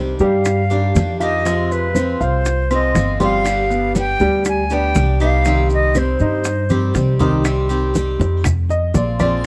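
Sultry and nostalgic, this short cut of Cuban son and guajira at 120 BPM in C harmonic minor sets an up-front breathy silver concert flute carrying the melody until 7.2 seconds over a thumpy pizzicato upright bass, a boxy picked swing-style acoustic guitar with finger squeak, warm baby grand piano arpeggios, background bongos, bright thin-skinned congas and woody claves, plus grainy maracas, with a drum fill at 6.7 seconds leading into a piano solo from 7.5 seconds, all captured in a dry, close 1970s-style small-room studio sound.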